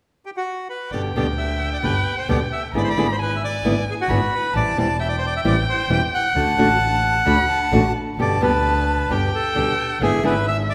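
Set in 4/4 at 132 BPM, the rhythm moves with a rubato, pushed-and-pulled feel in this playful, passionate tango in G major, cut from a longer piece. A reedy, bright bandoneon carries the melody up front, entering alone at 0.3 seconds. At 0.9 seconds the rest of the group joins. A bowed violin adds a smooth second line above it, sung with vibrato and portamento, while a small, fingerpicked nylon-string guitar supplies acoustic accompaniment and a close, focused double bass bows the low end with vibrato. The harmony runs G, E7/G#, Am7 and D before returning to G, with the guitar dropping out at 10.3 seconds as the others ring on. A wet scoring-stage reverb lends the ensemble a spacious, resonant sheen.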